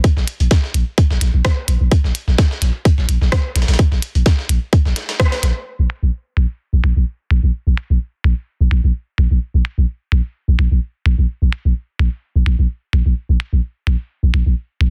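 Minimal techno with a quirky, sparse mood, cut from a longer piece, opening on an up-front, tight electronic kick beside a gritty, overdriven sampler-style kit of hi-hat and medium-tuned snare, its hats pumping under sidechain, until both drop away after a band accent at 5.2 seconds. A deep, punchy sine sub bass with a pitch-drop attack sustains and pumps throughout, while a tape-warm minimal click kit of clicky hats and rim clicks carries the sparse second half alone with the bass. The mix sits in a digital ambience with a dense, heavily limited modern master.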